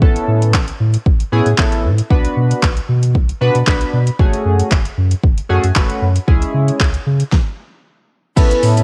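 This summery dance-pop excerpt has a lo-fi, home-cassette sound inside a digital ambience, moving at an upbeat 115 BPM in a straight 4/4 over an Aadd9, Bm, F#madd9 and C#m progression. An up-front deep house kit with a deep kick, fat snare, metallic hats, handclaps, shaker and crash drives the groove, while a thick, triangle-toned saturated sub bass pumps under sidechain compression. Glossy, chorused retro synth keys built from detuned pulse and sawtooth waves with a filter sweep and pulse-width modulation ring bright and also pump, adding a fill at 3.4 seconds before the music breaks for a stop at 7.3 seconds.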